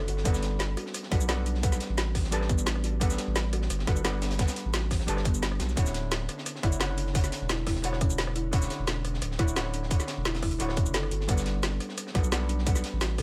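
The recording sits in a small room, with an up-front low end, and it plays as a short cut from a longer liquid drum and bass piece at 174 BPM in a straight 4/4. The mood is uplifting and lush, built on a Gmaj9 that moves to Dmaj9 at 5.8 seconds and returns to Gmaj9 at 11.1 seconds. A saturated sub bass sits up front, deep and thick with a sine-like body, a fast attack and long sustain. A tight electronic kick joins at 0.3 seconds, alongside a layered electronic kit of hi-hats with a metallic edge, a woody snare, rim clicks and shaker. Behind it, a crunchy breakbeat kit adds a high-tuned snare and hats that sound gritty and rolled-off on top. A clean, dark hollow-body electric guitar plays fingered accompaniment through a delay, while a kalimba, plucked with a thumbnail and warm and woody with a hollow box tone, spins short background arpeggios through a digital delay.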